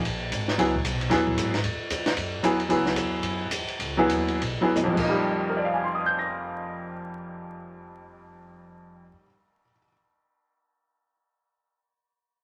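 Modal jazz with a hypnotic, searching swing, cut from a longer piece, where a clear, smooth, vintage upright piano that sits up front joins a dark, thumpy pizzicato upright bass on gut strings, while a dry compact cocktail drum kit with dark cymbals, a high-tuned snare and a punchy kick slows from 2.7 seconds into a drum fill before stopping at 5.0 seconds, all set in a short studio ambience under vinyl crackle.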